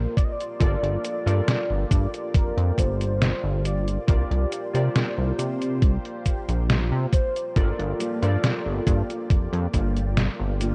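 A slow, straight 4/4 pulse at 69 BPM from a thumpy electronic kick and a detuned 8-bit drum machine with snare, hi-hat and cabasa carries this melancholic, nostalgic vaporwave excerpt in G minor, where a glossy chorused synth bass sits up front beneath warbling lo-fi keys, a lush phased pad in the background and a velvety, vibrato-tinged synth lead with tape echo that sings until 7.5 s, before a dark, clean electric guitar riff enters at 8.0 s over the closing Gm7 chord, all wrapped in light reverb and cassette-tape character.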